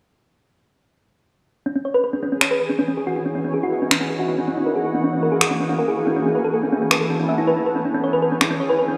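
Future bass at 160 BPM in a half-time 4/4 feel, this euphoric, lush excerpt in E major moves through E6, C#m11/E, F#9 and B9sus4 before returning to E6. A round, tine-like synth pluck resembling a thumb piano opens at 1.7 seconds with fast-attack arpeggios dressed in chorus and dub echo, soon joined by a shimmering, ethereal pad of sustained chords with an octave-up shimmer, granular texture and built-in reverb. Overdriven, layered electronic finger snaps sit up front as the drums, all set in a lush hall reverb over small room ambience.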